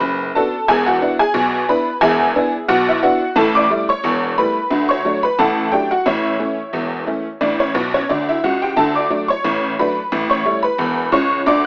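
Ragtime piano in a jaunty, playful mood, set in 2/4 at 89 BPM with a light swing on the sixteenths, as a solo tack piano carries the whole 11.7-second fragment cut from a longer piece. The tack piano sits up front with a metallic, jangly, percussive edge and a vintage brightness, ranging from E1 to D6 through a progression that moves from Bm and E7 to A7, D and A, with a honky-tonk fill between 7.8 and 8.8 seconds. Studio reverb surrounds a rough home-demo mix with the character of AM radio.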